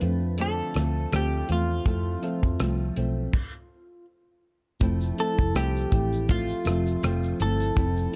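This laid-back, sunny indie bedroom-pop fragment in F lydian opens at 81 BPM with everything together: a damped 70s drum kit that is dry, tight and up front (crash, hi-hat, kick, rim click and shaker), a round, foam-muted fingered bass, a fingerpicked flamenco guitar bathed in lush chorus and warbly pitch drift, and a reedy electric piano sitting mellow in the background. A clean, compressed, picked electric guitar carries the dark melody with subtle chorus over a gentle 16th-note swing, moving from Dm7 to Fmaj7 at 1.9 seconds. A stop at 3.3 seconds gives way to a new section at 4.8 seconds, all set in a small, intimate room.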